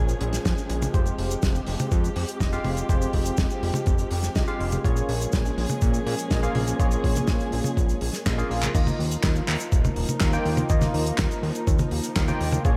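A gritty, overdriven electronic kick, arriving half a second in, thumps beneath this nostalgic, melodramatic italo disco fragment alongside a fat, detuned analog bass, bright, barky tine electric piano stabs coloured by analog chorus and tape echo, dark, woody bowed strings holding lush sustained chords over Bbm7 and Fmadd9, and a damped 70s drum kit of snare, toms, hi-hat, handclaps, cabasa and crash with gated reverb, whose fill at 8.3 seconds leads into an Ebsus2 passage, all set in a small room ambience.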